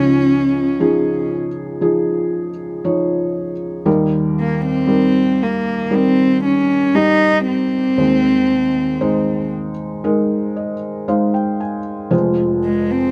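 A single bowed cello leads this intimate, melancholic acoustic folk-pop ballad, played sul tasto with an airy bow, soft attacks and light vibrato as it carries the melody up front for the full 13.1 seconds. A felt-muted upright piano gives mellow, hushed accompaniment at a slow 58 BPM in 4/4, moving through Dbadd9, Eb, Ab/Eb and Fm. Close, detailed microphones and little reverb keep this brief fragment of a longer piece dry and near.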